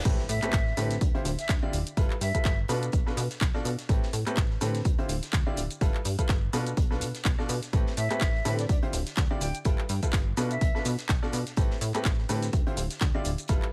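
A reverse cymbal and impact open this energetic, soulful piano house excerpt in A minor, landing as the drop arrives at 0.1 seconds and running at 125 BPM with a light 16th-note swing. A punchy, tape-warm electronic kick sits up front in a small room, joined by a layered garage kit of crash, handclaps, hi-hat and shaker, while a very quiet acoustic indie kit adds hi-hat and a medium-tuned snare with a pumping room sound. A bright, woody upright piano carries the riff with delay and sidechain pumping, cycling through Am9, Dm11, G13 and Bm7b5, and a plucky, funky analog bass blending sawtooth and pulse waves with a fast-attack, decaying filter pluck pumps beneath it. A distant, reedy concert flute with vibrato and tongued notes floats its melody in with delay for two brief phrases, the second beginning at 8.0 seconds. The mix stays lively and open, with the kick and bass driving the groove under the brilliant piano.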